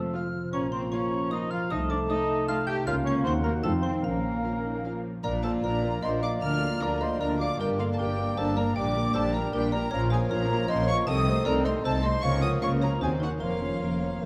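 Dark, moderately reverberant orchestral sound frames this magical, sneaky and whimsical film cue in 3/4, where a woody, dry xylophone carries the melody alongside an expressive chamber violin section; a mellow cor anglais, a clarinet, a pure, distant flute and a very quiet, lush studio violin section add second lines, while a bassoon and a focused viola section fill the accompaniment, a French horn section holds sustained chords, a ringing harp spins arpeggios, and a smooth cello section and rich double bass section anchor the bass as the harmony turns from minor to major at 5.2 seconds and back to minor at 9.9 seconds.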